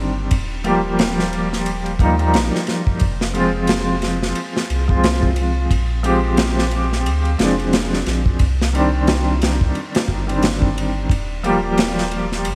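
A felt-muted upright piano, soft and intimate with audible action noise, opens this dark, hypnotic trip hop excerpt in F dorian at 89 BPM, its tremolo, 12-bit sampler grit and tape echo sitting up front over a round, soft dub sub bass. A deep reggae drum kit joins at 0.3 seconds with a tight kick, medium-tuned snare and ride cymbal, dry and close yet touched by small room and gated reverb, while the chords move from Ebadd9 through Fm, Bb7 and Cmadd9 with a 16th-note swing. A lush hall reverb, vinyl crackle and bright 1980s-style digital production frame the whole.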